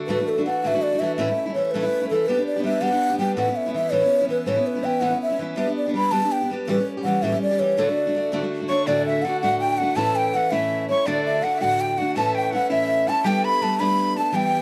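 A hollow, breathy bass bansuri carries the cheerful, bright melody of this Celtic folk jig in D major at 109 BPM in 6/8, over an up-front picked steel-string acoustic guitar, joined at 8.7 s by a low whistle with a crisp, chiffy attack on a second line, all set in light reverb with lossy compression artefacts in this clip cut from a longer piece.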